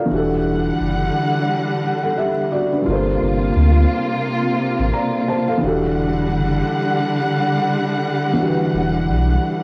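Heard through light reverb and the vinyl crackle of a home-made cassette recording, this hazy, nostalgic hip hop fragment at 87 BPM with a swung 16th feel pairs a soft, dark, felt-muted upright piano, intimate and vintage with audible action noise, with a lush bowed string section full of vibrato and portamento, while a deep, up-front sub bass with octave, colored by transformer saturation, anchors the drift between Em11 and Gm11.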